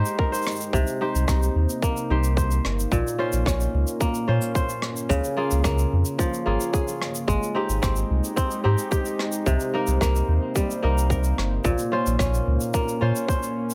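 Hopeful and pastoral, this short folktronica excerpt moves at a steady, straight pulse in four. A warbly, tape-like pad holds sustained chords throughout, its detuned, lo-fi tone softened by chorus and a slow attack that gives it a nostalgic haze. Up front, a fingerpicked kora rings out crisp arpeggios with a trail of delay, while a round, sine-like sub bass sits deep and mellow beneath it. The percussion pairs an airy shaker and rim click, played with brushes, with a tight electronic kick whose overdriven thump carries the sound of a large room. The harmony drifts through Abmaj7, Cm7, Bbmadd9 and Db6 before circling back, all under a light reverb that keeps the mix gentle and open.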